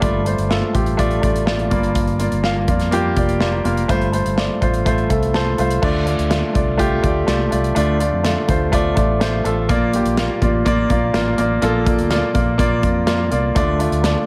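Bittersweet and dramatic, this piano-driven pop passage is cut from a longer piece and moves in a straight four-four pulse. A clear, polished baby grand carries the accompaniment up front, spanning G2 to A5, and plays a short fill from 5.1 to 5.8 seconds that leads into the second section. Beneath it, a fretless electric bass gives an amped, growly low end. A modern studio kit of kick, snare, hi-hat and crash sits mid-forward, with a punchy kick, a medium-tuned snare and a rolled-off top. The harmony opens on slash chords over a G bass, then settles onto plain D minor and B-flat, while a moderate plate reverb wraps the mix in a studio space.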